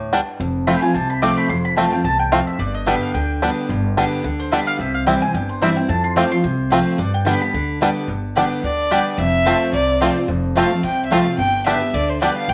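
Awash in wet spring reverb and small-room ambience, this joyful, virtuosic swung bluegrass excerpt sets a twangy fingerpicked banjo melody over a full-bodied, up-front picked dreadnought guitar, a growly, thumpy pizzicato upright bass and a woody mandolin that takes a solo for the first 8.1 seconds, before a clear, focused bowed fiddle with light vibrato joins the melody at 8.6 seconds.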